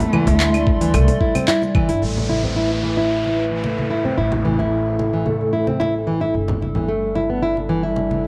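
An earthy, meditative stretch of organic downtempo in A minor at 111 BPM, cut from a longer piece, where a dark, bowed cello sings a brief, expressive line with vibrato and portamento in the background over a warbling, nostalgic square-and-triangle pad with chorus and sidechain pumping. A full-bodied, fingerpicked nylon-string guitar sits up front with arpeggios through a low-pass filter and digital delay, joined by woody pizzicato upright bass, bright congas played with soft hands, and an overdriven deep house kit of claves, handclaps, metallic hats and shaker alongside a gritty, thumpy kick, both kit and kick dropping out by 2.0 s. At that point the chords move from D7sus4 to A5 and then G5 at 6.3 s while an electronic downlifter and riser drift in, all colored by echo-chamber reverb and worn cassette-tape pitch drift.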